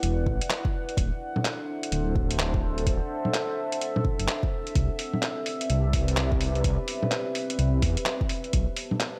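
A menacing, detuned saw bass sits up front in this wistful, rainy future garage excerpt, its saturated unison tone built from sawtooth, square and sine layers with a fast attack and an evolving filter swell, pumping against the beat in the low register. Alongside it, a dark analog pad, also up front, holds deep, moody chords from sawtooth and triangle waves with a sub octave, its slow attack colored by chorus and phaser and also breathing with sidechain pumping. The chords move from Em9 to D9 at 1.0 seconds, then Cmaj9 at 4.8 seconds, settling on a tense B7b9b13 near the close. A lo-fi sampler-style kit of bongos, handclaps and hi-hat sounds compressed, pitched down, muffled and tape-warm, swung at 127 BPM in 4/4. An overdriven, layered electronic kick enters at 0.3 seconds, its deep thump re-recorded in a small room, while light reverb lends the whole mix a digital ambience.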